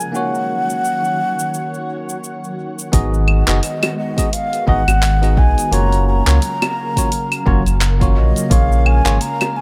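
Smooth, warm sunset chillout with a gentle swing, this excerpt opens with an airy wooden baroque flute melody over bell-like tine electric piano, both trailing tape echo, while a silky string machine with phaser, ensemble chorus and 12-bit grit undergoes a filter sweep and a deep house kit of cabasa, claves, handclaps and hi-hat ticks through analog delay. At 2.9 seconds a round, dark analog bass with tube saturation sits up front alongside a punchy layered electronic kick, and tight, high-tuned bongos join at 3.8 seconds. The chords move from D#m7 through G#m7 and F#maj7 to A#m7 in a lightly reverberant, echo-heavy mix.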